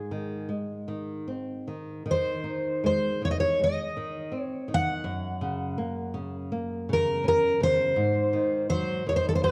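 A fingerpicked twelve-string acoustic guitar carries the melody up front, its full-bodied, shimmering tone octave-doubled, in this passionate, longing fado-style ballad cut from a longer piece. A flamenco guitar, also fingerpicked and up front, supplies the lower accompaniment, with both guitars playing throughout the 9.5 seconds at a loose, rubato pace of roughly 76-84 BPM in 4/4. The dark production sits in a moderate recital hall reverb, and the harmony moves from G# to F# at 5.1 seconds before settling on G#7 at 8.0 seconds.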